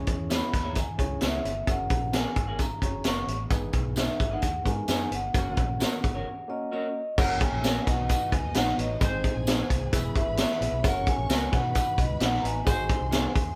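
Danceable and warm, this uptempo 1960s-style soul cut moves at 131 BPM in a straight 4/4, with a mellow, ringing vibraphone on soft mallets carrying the melody over a gritty, barky electric piano, a dark, round muted bass, a punchy up-front vintage drum kit and a jingly tambourine in the background. A bright, twangy guitar through a small old amp adds picked stabs bathed in spring reverb, while a smooth jazz-style horn section joins at 5.3 seconds for a band accent and a short break before the second section opens at 7.2 seconds, where a very quiet bowed string section with expressive vibrato enters. The chords move from C#m through F#add9 and G#m to a closing G#7, and the light reverb gives the feel of a band playing live in one room.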